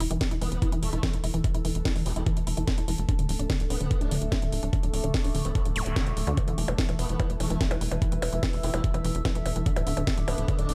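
The mix is dry and close, with an up-front low end in this short cut from a longer psychedelic trance track, which drives intense and trippy at 146 BPM in a straight 4/4. A knocking electronic kick, re-recorded in a small room, anchors the groove alongside a layered techno kit of cracking snare, metallic hi-hats and percussion blips. A tight, saturated sequencer bass, sawtooth and square with ring modulation and a snappy filter pluck, pushes underneath, while a lush, detuned unison pluck riff with a noise layer runs through digital delay and sidechain pumping. A pulse-wave formant-sweep wobble bass adds a second line in a rich chorus with high-pass filtering and delay. From about 1.2 s a resonant drone with moving overtones sustains chords in the background. Shortly after, a lo-fi, nostalgic tape-like pad with a dark warble fades in as the harmony shifts between E5 and D5, and a brief electronic zap cuts through at 5.8 s.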